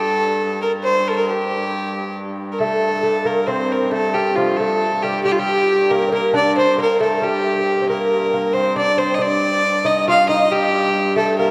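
In a straight 6/8 at 91 dotted-quarter beats per minute, this driving, ancient-sounding medieval dance in G minor sets a biting, earthy fiddle melody with slapback echo up front over a nasal, reedy hurdy-gurdy drone on G2, joined at 2.6 seconds by a mellow, fingerpicked lute second line on doubled gut strings, all bathed in a wet church reverb in this short cut from a longer piece.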